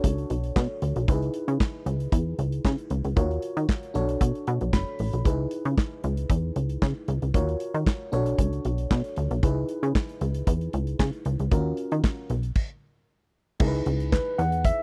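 A dark, smooth acoustic drum kit, a punchy, plucky analog bass and a soft FM electric piano open this danceable, late-night slice of early-eighties boogie funk. The drums sit up front with a tight kick, a medium-tuned snare, hi-hat, handclaps and crash cymbal, their top end rolled off in a small room. The funky bass is also up front, a blend of sawtooth, square and sine tones with ring modulation and wave-folding, shaped by a fast filter pluck that quickly decays. The FM electric piano carries a noise layer and a quick attack and adds a brief fill at 4.5 seconds. The harmony cycles through Bm9, C#m9 and D#m9 before the band hits a stop at 12.6 seconds, and a new section then lands on C#m9. At 14.1 seconds, just as this excerpt ends, a mellow, clean, direct tine electric piano steps up front with a short melody over the dry, close sound of a 1970s-style studio.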